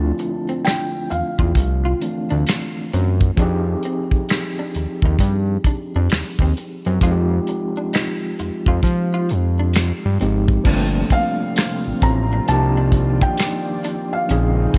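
Light studio reverb gives this smooth, introspective neo-soul and R&B excerpt a close, polished sound, cut from a longer piece at a slow 66 BPM in 4/4 with a swung sixteenth-note lilt. A mid-forward soul drum kit with dark cymbals and a tight kick sits up front, using kick, snare, hi-hat, finger snaps and crash, beside a fat, thick analog bass with a sawtooth edge and filter sweep. An overdriven tine electric piano carries the chords, bright and barky with fast tremolo through a combo amp, while a lo-fi, slightly broken-up electric guitar plays a quiet second line in the background with ensemble chorus. A felt-muted upright piano states the melody in a soft, mellow high register with audible action noise and tape echo, dropping out at 2.9 seconds and returning at 11.1 seconds. The harmony moves through minor ninth and eleventh chords, and at 10.6 seconds a warbling, detuned analog pad with subtle chorus enters in the background as the second section begins.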